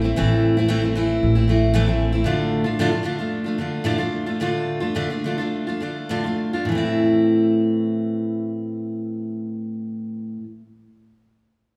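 In a straight 4/4 that slows between 2.3 and 6.7 seconds within a 97–115 BPM range, this haunting, intimate folk fragment in A minor, cut from a longer piece, opens with a dark, thumpy pizzicato upright bass on gut strings that stops at 2.2 seconds, while an up-front, full-bodied picked dreadnought guitar with old strings and a woody tone carries the accompaniment through Am and Dm/A until 10.5 seconds, all set in the wet reverb of a church or concert hall.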